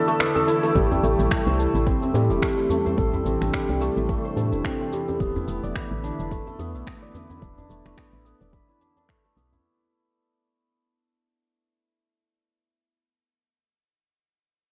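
A swung 108 BPM groove in 4/4 drives this earthy, meditative organic downtempo fragment in A minor, where a shimmering, hammered santur plays filtered, delayed arpeggios up front from the start and rings on alone until 13.7 s, over a dark, chorused analog pad pumping with sidechain, tape-warm electronic shaker and finger snaps, a deep djembe in the background, a round, woody FM bass with tube saturation and an overdriven electronic kick that both enter at 0.8 s, as the music fades out from 0.8 s through a lush hall reverb and warbling cassette pitch drift.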